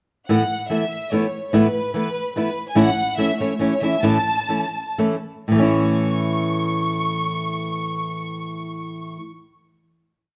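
At 0.3 s, a violin section and a flamenco guitar begin together in this brief, complete mariachi piece in A major, romantic and proud in mood. The violins carry a free, bowed melody with vibrato, their ensemble tone rich and focused, while the bright acoustic guitar supports them with fingerpicked open chord shapes, chop strumming and the occasional finger squeak from its fresh strings. The rubato 3/4 pulse moves between 109 and 148 BPM, and the harmony settles from Asus2 onto A at 2.8 s. From there the music slows until 5.5 s, when it arrives on a final chord. Both parts sit up front, captured by close, detailed microphones within a moderate recital-hall reverb.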